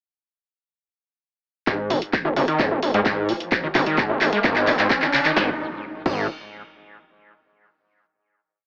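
Driving peak-time techno in G# minor at 130 BPM, dark and relentless, this short complete piece builds from 1.7 seconds with a drum fill as an overdriven four-on-the-floor kick and punchy analog drum machine hats, claps, snare and crash drive forward, joined at 1.9 seconds by a gritty, sidechain-pumped sawtooth bass with a rolling staccato groove. Over them a screaming, squelchy acid line with accents and slides runs a 12-step loop drifting against the bar, distorted and chorused with tape-worn delay, while a background riser climbs from 3.2 seconds into an impact. At 5.4 seconds the build gives way to a final chord, the whole piece carrying a lo-fi cassette and AM radio character with moderate studio reverb.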